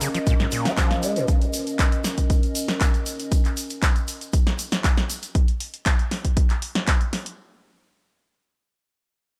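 A trippy, gritty acid house drop in Bb minor at 118 BPM opens on a Bbm chord, with a squelchy, resonant sawtooth acid bass riff carrying overdrive, analog chorus and diffuse delay until 1.3 s, a deep, detuned analog pad pumping under phaser and chorus, a very quiet, distant brushed jazz kit, a grainy tube shaker in the background and an up-front analog drum machine of snare, handclaps and hi-hat, before a punchy electronic kick drum enters at 0.3 s and holds until 7.0 s, all set in a light studio reverb.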